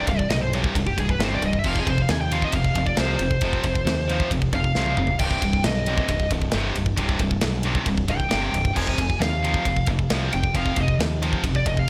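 Aggressive and heavy, this heavy metal excerpt sets a warm, high-gain lead guitar solo with digital delay over two picked rhythm guitars in the background, one bright and scooped, the other tight and distorted, along with a growling, overdriven fingered electric bass and an up-front acoustic drum kit with a tight kick, medium-tuned snare and rolled-off top that plays a brief fill at 4.8 seconds, within a studio reverb.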